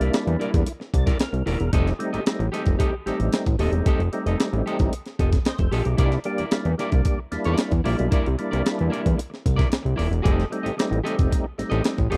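A straight 4/4 funk groove rides on a compressed, sampler-style breakbeat kit with a thumpy kick, medium-tuned snare and hi-hat, set up front beside a fat, nasal analog bass built from detuned sawtooth and square waves. A lightly overdriven tonewheel organ with key click, chorus vibrato and a slow rotary speaker stabs over the C9 and F9 changes and drops a fill from 0.7 to 1.7 seconds, while a slightly broken-up electric guitar with spring reverb sits lower in the mix. The gritty cut, taken from a longer piece, has a dry, close 1970s-style studio sound.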